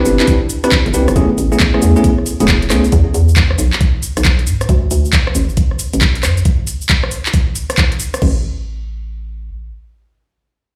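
Bright, bell-like tine electric piano stabs with digital delay open this soulful, bouncy two-step UK garage excerpt at 136 BPM with a swung 16th feel, over a hollow, punchy FM bass; a layered, knocking electronic kick joins an overdriven garage kit of metallic hats, handclaps, rim clicks, shaker and crash through a drop over Cmaj9, Amaj9, E and D chords, the piano stopping at 2.8 s and the drums at 8.3 s, with the mix played back on a big sound system in a bare room with small room reverb.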